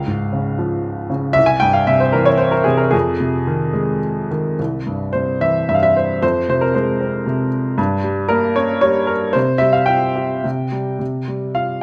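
In a flexible, rubato triple metre, this bittersweet, cool passage of lyrical classical solo piano drifts through a short phrase before a second section opens at 4.6 seconds, its harmony settling toward suspended and open sonorities near the close. The upright piano sits up front and intimate, with a woody, slightly detuned character and audible action noise, spanning low bass to upper treble. A moderate recital hall reverb surrounds it, and the fragment, cut from a longer piece, ends at 11.8 seconds.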